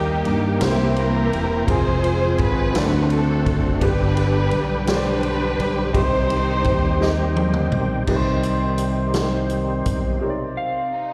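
A gritty, overdriven tonewheel organ with slow rotary swirl takes a solo from 8.1 to 10.2 seconds in this fervent, solemn slow gospel cut in 6/8 at 56 BPM in C harmonic minor, where an up-front, expressive bowed string section carries the melody with vibrato and portamento over a woody, slightly detuned upright piano in the background, a round, punchy fingered electric bass, and a distant, roomy big-band drum kit, before a dark, slightly broken-up electric slide guitar joins the strings at 10.6 seconds over a closing Cm9 chord, all heard as a live gig through the venue's PA with recital hall reverb.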